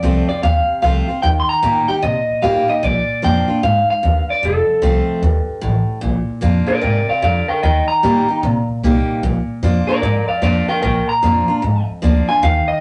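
Rockabilly at 150 BPM in Bb major, rollicking and rowdy, with a swung feel in this short cut from a longer piece. A twangy, slightly broken-up electric guitar through a small old amp carries the melody up front, moving into a clean solo from 6.0 seconds, while a picked steel-string acoustic guitar plays a warm accompaniment and a woody, thumpy pizzicato upright bass drives the low end. The rough rehearsal-room sound is dull at the top, with moderate reverb giving the trio a lively, close-up presence.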